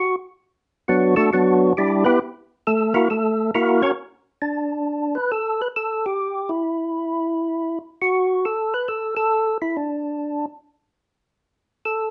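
A fat, lightly overdriven tonewheel organ with third-harmonic percussion, vibrato and a slow rotary speaker sits up front, soloing alone over a swung jazz feel in 4/4 for the whole 12.1 seconds of this short cut from a longer piece. It moves through Bm7, Em7 and F#7 in the opening stretch up to 4.4 seconds, then carries on into a new section. Moderate studio reverb gives it a soulful, late-night mood.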